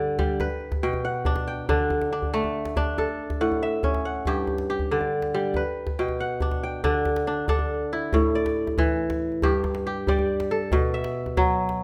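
A ringing, crisp kora sits up front, its fingerpicked arpeggios spanning G2 to G5 from the very start of this joyful, warm piece of West African string and xylophone music in D major. The groove moves at 93 BPM, counted in dotted quarters, in a straight 12/8. A tight, close djembe enters at 0.2 seconds, its hard-handed, cracking strokes sitting a little lower in the mix beneath the kora. The harmony cycles through Bm, D5, A and G5, and a second section from 6.8 seconds brings A5 and closes on B5. The whole passage is wrapped in a moderate recital-hall reverb and is cut from a longer piece.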